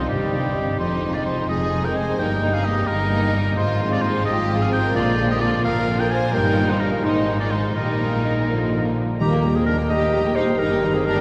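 Bathed in a long, wet cathedral reverb, this 11-second passage from a fast, dramatic romantic orchestral movement in 6/8 has a graceful, cheerful lilt. Lush bowed violins with a smooth top and vibrato carry the melody, while a clear oboe sings a second line until 8.9 s and a second violin section adds a rich, supporting line in the background. Violas fill the middle register with smooth, even bowed tone, cellos add rich, focused bowed tone lower down, and a distant, woody double bass section anchors the bass. A mellow concert harp rings out thumb-plucked arpeggios in the background, and very quiet, close timpani touches first appear at 4.9 s. At 9.2 s an up-front solo clarinet takes over a second line as the harmony settles onto its home chord.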